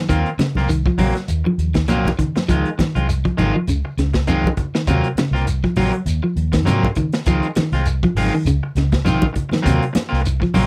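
A clean, picked electric guitar opens with low arpeggios, and at 0.1 seconds a funky, intense afrobeat groove in Eb dorian kicks in at 100 BPM with a lightly swung sixteenth feel, cycling between Ebm69 and Dbmaj9. A twangy, slightly broken-up guitar sits up front with picked stabs, over a dark, round, punchy muted bass and a gritty, saturated breakbeat kit with a tight kick and a rolled-off top. A grainy shekere and thick-skinned congas, the congas entering at 0.4 seconds, sit in the background of this dry, close, 1970s-style studio recording, cut from a longer piece.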